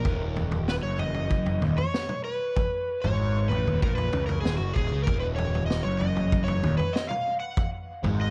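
Hypnotic and mysterious, this short psychedelic rock excerpt in Eb minor moves at 96 BPM in a straight 4/4 over a single Ebm chord, with an up-front overdriven slide guitar soloing between Gb4 and Gb5 through dub echo, a dark double-tracked fuzz guitar riff run through phaser and dub echo, a punchy overdriven fuzz bass, and a gritty vintage drum kit with a high-tuned snare, tight kick and toms, all set in a small, lightly reverberant room within an echo-heavy mix.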